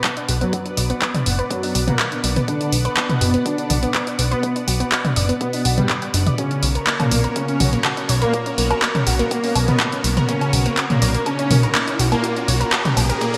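Cinematic and dramatic, this melodic techno passage at 123 BPM in B harmonic minor moves from Bm to F#/B as it builds throughout, cut from a longer piece. A punchy, tape-warm analog drum machine with handclaps, hi-hat, toms and woodblock sits up front in gated reverb over a very quiet, deep layered electronic kick, while a fat, saturated, detuned bass drives beneath and pumps with sidechain. A round analog pluck arpeggiates through chorus and digital delay, and a smooth supersaw melody, an airy, dreamy lead with vibrato and a lush, thick unison pad with phaser sit in the background. Filter sweeps move across the pluck, supersaw and lead, and a riser enters at 9.5 seconds, all bathed in a wet plate reverb within a bright 1980s-style digital production.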